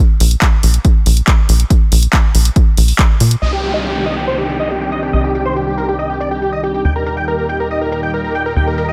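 Bittersweet and euphoric, this uplifting trance excerpt in C minor drives along at 140 BPM, with a tight, plucky sawtooth sequencer bass pumping against a punchy analog drum machine of filtered hi-hats, shaker, handclaps and crash, while an up-front electronic kick thumps until 3.1 seconds. At 3.4 seconds the harmony moves from a bare opening to Cmadd9 and later Eb, as a huge, detuned supersaw lead enters with phaser, filtering and delay, carried over a lush, thick unison pad shimmering with chorus and a brief electronic downlifter. The sound is dry and close, with the bass, lead and pad all pulsing to sidechain pumping.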